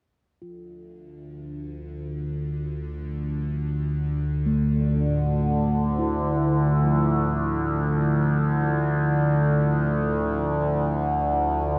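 Bathed in a vast, wet reverb, this dark and desolate ambient drone opens with a very quiet quartz singing bowl at 0.4 seconds, its pure, mellow ring struck with a felt mallet and heard close and dry. At 1.3 seconds a sustained, up-front synth drone arrives, its wave-folded sawtooth, sine and triangle tones sweeping through moving, resonant overtones and a shifting notch, carried by chorus and a long release. From 4.5 seconds a metallic bronze singing bowl adds meditative arpeggios with slowly beating tones, sounding boxy and warm in a small room and trailed by tape echo.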